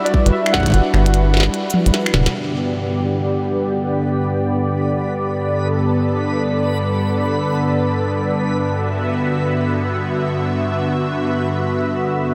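A dreamy, reverb-soaked mix opens this glitchy, intricate IDM fragment in G major, drifting in free time and cut from a longer piece. A smooth, detuned sawtooth pad sits up front holding sustained chords from the start to 12.3 seconds, moving from D6/G to G and back to D6/G, while warbling, nostalgic lo-fi synth keys sing a brief melody in the background through chorus and delay. A tight electronic kick thumps briefly before dropping out at 0.7 seconds, while for the first couple of seconds a rubbery, saturated acid bass with a resonant square-wave pluck down low and a glitchy kit of finger snaps, clicky hats, shaker, a tiny snare and toms, muffled by low-pass filtering and trailed by diffuse ambient delay, flicker through the space, closing with a drum fill. From 3.4 seconds a reversed, granular texture swells in on a single bright, detuned note, carrying its own ensemble chorus above the pad's long sustain. 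The huge ambient reverb lets every sound hang in the air, giving the passage a hazy, suspended feel.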